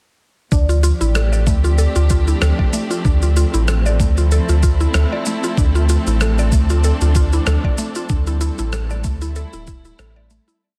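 A dense, heavily limited digital ambience frames this meditative, hypnotic organic downtempo piece at 95 BPM with a light 16th-note swing, where a deep, round sub bass sits up front under a woody FM mallet pluck cycling through a 16-step chorused, delayed arpeggio, lush distant bowed strings pumping through slowly shifting chords from G9sus4 to Dm7 and Am7, a gritty, tape-warm kick with a layered cabasa and rim-click beat re-recorded in a large room, and a faint ringing bronze singing bowl holding a high D5, before a fade-out from 7.3 to 10.6 seconds.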